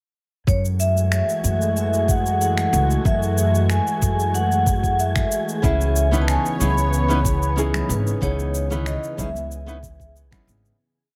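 Sunset chillout in C# minor at 93 BPM, a smooth, warm whole piece where a ringing vibraphone with slow motor vibrato carries song-like motifs over a lush detuned sawtooth pad with chorus, a woody pizzicato upright bass with long gliding notes, a soft knocking electronic kick and a light lounge beat of cabasa and finger snaps, an airy wind-like noise texture holding a high note in the background, a dark fingerpicked flamenco guitar with dotted-rhythm chords entering at 5.6 seconds, and very quiet congas from 6.1 seconds, moving from F#m9 to C#m9 before fading out from 7.4 seconds.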